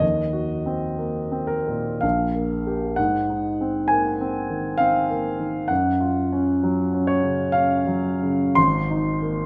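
Hazy and mysterious, this brief passage of impressionist classical music is played on a solo grand piano. It moves in triple metre with a free, rubato feel, the pulse stretching and relaxing. The piano sounds warm, polished and present, placed up front, with a long sustain that lets its harmonies linger. It ranges from a deep Ab1 in the bass up to C6, and the harmony drifts from Ebm6 through Bb5 and Ab9 to Gb5, arriving on Abadd9 at 8.6 seconds. A moderate reverb, like that of a scoring stage, adds soft depth around the instrument in this fragment taken from a longer piece.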